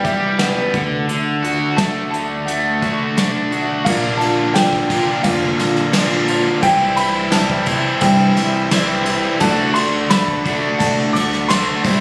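A dark, mellow grand piano carries the melody from the start, its worn, boxy tone marked by audible action noise and short sustain, over a jangly, hopeful blend of folk rock and heartland rock at 86 BPM in a straight 4/4. Up front, a crunchy, double-tracked overdriven electric guitar plays a bright picked riff, while an old ladder-braced acoustic guitar with old strings plays picked accompaniment in the background. A pizzicato upright bass with steel strings holds the low end, and a polished brush kit with dark cymbals, a medium-tuned snare and a punchy kick sits up front in an airy studio room. At 3.9 seconds, as the chords move from E minor and D to B-flat, a very quiet dark upright piano, a full tonewheel organ with key click and fast rotary speaker, and a grainy egg shaker join the texture. The track has light reverb and compression, recorded on a phone in the room and cut from a longer piece.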